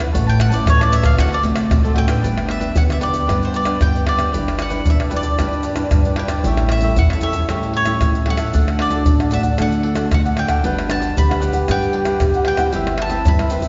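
A sunny, lively samba and choro excerpt in G major at 114 BPM opens with close, dry percussion up front: tube shaker, pandeiro, tamborim and a tight surdo, over a woody, thumpy pizzicato upright bass, a fingerpicked classical nylon-string guitar and a crisp, picked cavaquinho. At 0.3 seconds a bowl-back mandolin with double strings takes the picked lead, carrying the melody over a brief Aadd9 to D7 opening. At 2.2 seconds the music settles onto G and a breathy, mellow trombone enters as a second line, its soft attack, scooped notes and vibrato giving it a whispered, intimate jazz voice. The harmony then moves through Em7/G, A7, D and Gmaj7 before ending on Cmaj7/G as the piece is cut off. The whole is set in a wet, hall-like reverb with a rounded, softened top end.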